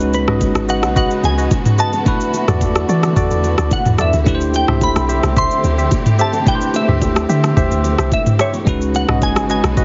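Heavily compressed, with a dull, radio-like top end and very little reverb, this soulful amapiano piece rides a smooth R&B drum kit with a knocking, up-front kick, rim click, shaker and toms. A deep, round log drum bass anchors the low end, and very quiet, distant bongos and congas sit far back. A bell-like tine electric piano through phaser and a lush, bowed string section in the background carry the suspended ninth chords, while a hollow organ stab with chorus and tape echo enters at 0.3 seconds and a glassy, crystalline wavetable pluck with a filter sweep, chorus and tape echo takes the melody from 0.1 seconds.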